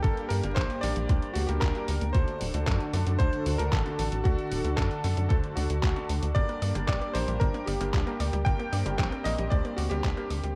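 Melodramatic and danceable, this italo disco excerpt moves at 114 BPM in G harmonic minor, with a clear, clangy electric grand piano carrying the melody over a lush, warbling unison pad, bright baby grand stabs and a tight, punchy sequencer bass with tube saturation driving up front. A thumpy electronic kick and a detuned 8-bit drum machine with handclaps and hi-hat keep the beat, while a round, nasal analog pluck joins with arpeggios at 6.4 seconds, sitting in the background under chorus and digital delay. The chords move from Gm to D and back, the production is dark with light reverb and vinyl crackle, and the passage fades out from 9.2 seconds.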